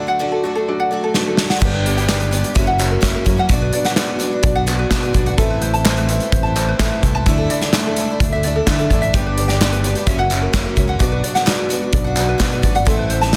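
A nostalgic, anthemic indie folk passage at 128 BPM opens on a D chord with a soft, felt-muted upright piano whose action noise is audible, a bright, shimmering, octave-doubled twelve-string acoustic guitar and light fingerpicked ukulele arpeggios; then a loose indie drum kit with dark cymbals and a tight kick steps up front with a fill at 1.2 seconds, a warm fingered electric bass joins at 1.6 seconds as the chords move through G, F#7, Bm and Amadd9, and crisp, distant group handclaps arrive at 2.1 seconds, the whole building arrangement sitting in a small room under a dense, heavily limited modern master.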